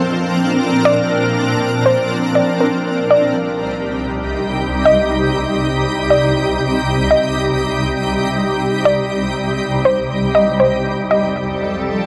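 A shimmering ambient pad sits up front, its bright, detuned unison voices and octave-up sparkle holding sustained chords from Bbadd9 through a long stretch of Cm to Fadd9 with chorus and built-in reverb. A soft, round pluck with a dark filtered edge enters at 0.9 seconds, tracing a gentle melody through chorus and tape echo until 11.3 seconds. This melancholic, ethereal half-time hip hop fragment, cut from a longer piece, floats in a huge ambient reverb with lossy compression artefacts.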